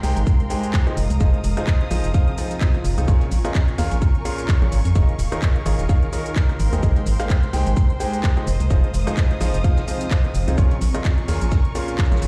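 Sounding as if played through a big sound system in a bare room with a large studio reverb, this joyful, uplifting piano house excerpt moves at 128 BPM in 4/4 with a light swing on the sixteenths. A clear, natural grand piano carries the riff over chords of Abmaj7, Fm7, Bbm7 and Eb9sus4, its notes trailed by a digital delay. Beneath it, a hollow, organ-like FM bass with a fast, decaying attack sits dark and up front, while a punchy, tape-warm electronic kick drum enters at 0.3 seconds and drives the groove. A house drum kit adds handclaps, rim clicks, shaker and metallic hats, joined by a very quiet, gritty, overdriven sampler-style kit of hi-hat, shaker and a medium-tuned snare. Lush bowed strings with vibrato hold sustained chords high above, and a cloudy, detuned granular pad drifts mellow in the background, the strings, piano, bass and pad all pumping to the sidechain.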